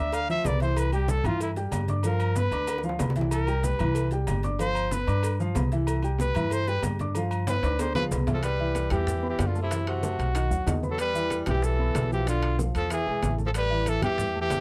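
A warm, lightly vibrato trumpet carries the melody up front in this sunny, sophisticated Afro-Cuban jazz excerpt at 188 BPM in C major, over a woody, thumpy pizzicato upright bass and a dark grand piano with long sustain. Low-tuned congas sit in the background alongside ringing, saturated agogo bells and timbales, tight, high-tuned cowbell and bongos, and grainy maracas, with drum fills marking the trumpet's solo passage. At 8.3 seconds a bright tenor saxophone with a soft attack joins as a second line, as the harmony moves into darker minor and diminished chords under light reverb.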